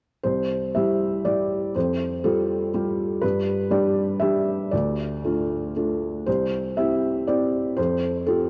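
A home cassette recording with a tape character, set in a lush hall reverb with a 2.8 second decay, frames this brief classical fragment cut from a longer piece. A felt-muted upright piano plays from 0.2 to 8.5 seconds, sitting up front with a mellow, hushed tone and audible action noise that makes it feel close and intimate. Its part is accompaniment, ranging from C2 to E5, moving through C, Fadd9, G, Dm and back to C and Fadd9 in C major. The tempo is 120 BPM in 3/4, played with a rubato feel that lets the waltz-time pulse breathe. The mood is tender and intimate, like a quiet moment at a home piano.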